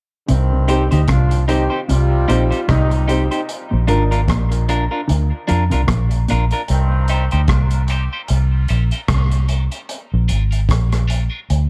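A short cut from a longer dub reggae piece in C minor opens at 0.3 seconds with the core groove all at once: a crunchy breakbeat kit of hi-hat, tight kick and rim click, gritty and saturated with a rolled-off top, beneath a foam-muted fingered bass that sits round and up front. At 75 BPM in 4/4 with a light swing on the sixteenths, the mood is hypnotic and spacious, moving between Cm and Bb. A horn section with light vibrato carries a loose second line through dub echo and a high-pass filter, while a very quiet, clean, fingered electric guitar plays a low riff until 6.4 seconds. A second electric guitar, picked and slightly broken-up, adds compressed accompaniment higher up, and a worn, woody upright piano, slightly detuned with audible action noise, drops echoing stabs in the background until 4.1 seconds. A tonewheel organ with slow rotary speaker flickers in only for an instant, barely audible, and a filter sweep runs from 3.5 seconds to the end in a dry, dark mix.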